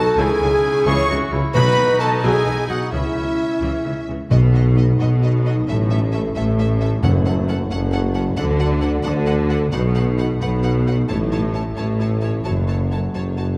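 A lush, soaring orchestral passage from a heroic adventure film score in a steady 6/8 opens with a clear, vibrato-rich violin section singing the melody over a distant second violin line, rich violas, mellow French horn chords, a ringing thumb-plucked harp and a deep foundation of bowed cellos and woody double basses joined by tuba. A clear oboe, a roomy clarinet and dark trumpet stabs drop out near 4.0 seconds as the music builds through its second half, punctuated by soft, round timpani strokes in wet scoring stage reverb.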